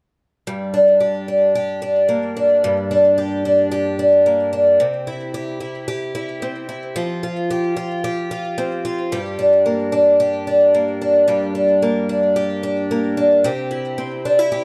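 A picked twelve-string acoustic guitar opens at 0.5 seconds and plays alone throughout this short folktronica excerpt, its octave-doubled strings giving a shimmering, woody tone with the character of old strings. Sitting up front in a dark production with light reverb, it moves through Gm, C and Fsus2 before returning to Gm at 9.1 seconds for a second section. The mood is intimate and delicate, with a straight feel in 4/4.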